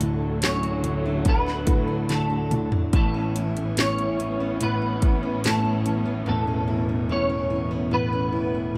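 A punchy, layered electronic drum kit sits up front in this heartfelt, tender pop ballad at 72 BPM in A major, adding a fill before falling away at 6.0 seconds, while a clean, picked electric guitar carries the melody through ensemble chorus, an intimate grand piano with audible action noise accompanies, a bright fingerpicked steel-string acoustic guitar plays arpeggios through digital delay, and a lush, distant bowed string section holds sustained chords in the background as the harmony moves from D to Aadd9 within a dark, warm production.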